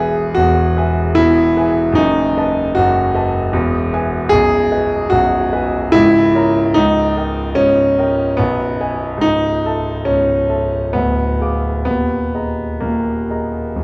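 Stormy and brooding, this excerpt from a romantic character piece for solo piano moves in a rubato triple metre, the warm, up-front concert grand reaching from deep bass notes to the upper register across restless chromatic harmonies, heard through a moderate recital hall reverb and the warbling pitch drift of worn old cassette tape.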